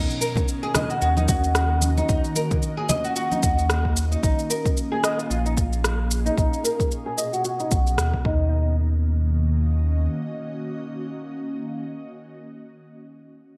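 A dark, airy pad with phaser and pumping, a fingerpicked flamenco guitar playing arpeggios through chorus, delay and a filter sweep, and a round sine sub bass open this meditative, hypnotic organic downtempo excerpt. A tape-warm electronic kick, a shaker and rim click in gated reverb, and soft-handed congas in the background join almost at once. The congas drop out by 3.4 seconds and the up-front guitar, with its audible finger squeak, falls away at 8.7 seconds, while the sub bass holds on until 10.1 seconds and the pad lingers until 12.1 seconds, all within a bright 1980s-style digital production and a moderate plate reverb.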